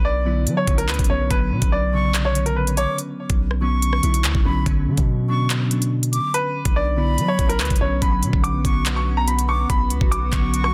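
A cold, menacing drill cut in B minor opens on a Bmadd9 with a bright, woody upright piano carrying the melody through a delay, over glassy digital keys with a chorus shimmer and a deep, sine-like 808 bass that hits fast and decays long. The electronic drill kit arrives at 0.5 seconds, its knocking kick, sharp hi-hats, handclaps and rim clicks sitting up front at 143 BPM with a half-time feel. A breathy, close-miked silver flute enters at 1.9 seconds as a second line in its high register, its straight, expressive tone trailed by delay. The piano falls away for a stretch and then returns, and at 8.0 seconds a hollow, detuned pad with slow attack and ensemble chorus swells in beneath the other parts. The sound is dry and dense, with a heavily limited modern master that keeps this fragment of a longer piece pressing forward.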